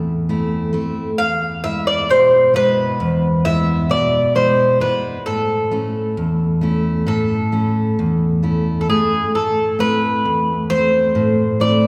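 A metallic, double-strung bouzouki carries the melody from 1.2 seconds, some of its strings octave-doubled and ringing up front in this reflective, melancholic Greek folk fragment in a straight 9/8. Beneath it, a full-bodied jumbo steel-string acoustic guitar, picked with audible finger squeak, opens the piece alone at 0.0 seconds and accompanies through a progression of Am, E, A and back to Am. Both instruments sit within a lingering church-like reverb that gives the performance a spacious, hall-borne glow.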